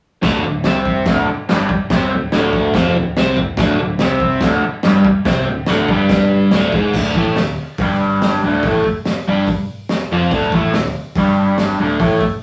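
A raw, bright, double-tracked garage guitar riff drives this swaggering, gritty garage rock cut in D minor at 143 BPM, its overdrive and phaser sitting up front over a crunchy, dark breakbeat kit with a high-tuned snare and tight kick, while a growling overdriven picked bass hovers in the background of a rough rehearsal-room sound that shifts onto a D5 chord at 6.9 seconds.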